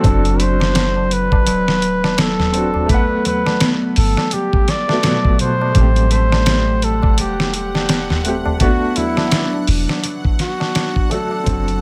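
A small room's ambience surrounds this brooding, melancholic trip hop excerpt, which moves at a slow 84 BPM in 4/4 with a swung sixteenth-note feel. Up front, a compressed, gritty sampler-style drum kit drives the groove with a thumpy kick, a fat snare and hi-hat under studio reverb, while a soft, round 808-style bass with a sine tone sits deep beneath it. A trumpet with a bucket mute carries the melody in a veiled, close-miked voice with light vibrato and tape echo, supported by a mellow, woody upright piano touched by tremolo, vintage 12-bit sampler grit and the same echo. A thumb-plucked concert harp rings out arpeggios, and a high-tuned tabla adds dry, close percussion in the background. At 6.8 seconds a tense, detuned, string-like drone swells in slowly with reverb and phaser, the harmony turning through D7/F#, Gmaj9, Am7 and E9sus4 before the fade-out begins at 9.6 seconds.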